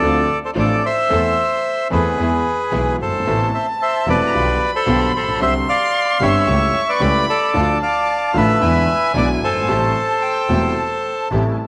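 A moderate echo-chamber reverb lends this passionate, dramatic tango fragment in A minor a roomy glow, moving at 112 BPM in 4/4 with a rubato feel. A reedy, bright bandoneon carries the melody up front over a warm concert grand piano with deep, open bass, while a clear, intense bowed double bass with light vibrato anchors the low end and a very quiet, intimate string section adds soft-attack sul tasto stabs. At 3.3 seconds a distant, expressive solo violin enters with a second line full of vibrato and portamento, over a chord progression that opens on Dm7 and settles on Am7.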